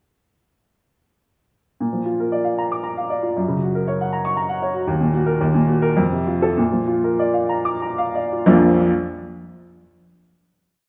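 A clear, woody upright piano enters at 1.8 seconds with sweeping arpeggios, opening a brief, lyrical and hopeful romantic character piece for solo piano in Bb major and 3/4, moving with rubato between 92 and 122 BPM. Its harmony passes from Bb through Gb and Eb minor to F before settling home on Bb, while the pace slows from 4.1 seconds toward the final chord. The piano sits up front with an open tone, and the wet reverb of a recital hall lingers after the playing stops at 8.9 seconds.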